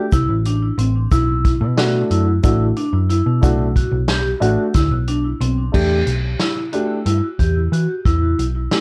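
Progressive instrumental in 7/8 at 182 BPM (eighths) and E minor, this tense, brooding excerpt cut from a longer piece sets a dark, mellow grand piano accompaniment beneath ringing vibraphone arpeggios with slow motor vibrato and analog delay, while a round, amped, hollow-body picked bass with transformer saturation and an acoustic vintage kit with a tight kick and rolled-off top push forward, a grainy, very quiet egg shaker drops out at 5.2 s, the harmony moves from Am to Bm before settling on Em at 5.7 s, and the whole recording carries light reverb and the warbly pitch drift of worn old cassette tape.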